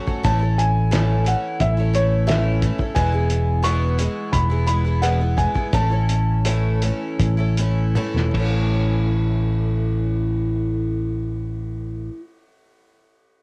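Folk rock and heartland rock in A major at 75-88 BPM with a warm, open-road mood, this short home-cassette cut pairs a soft, felt-muted upright piano melody, its action noise audible, with a bright, shimmering twelve-string acoustic guitar, a round, up-front fingered electric bass and a muffled, cloth-damped thuddy drum kit with a fat snare and dark cymbals, all in light reverb, as the chords move from A to E and back, the tempo slows from 3.0 seconds, a drum fill arrives at 7.9 seconds, and guitar and bass carry on after the piano stops.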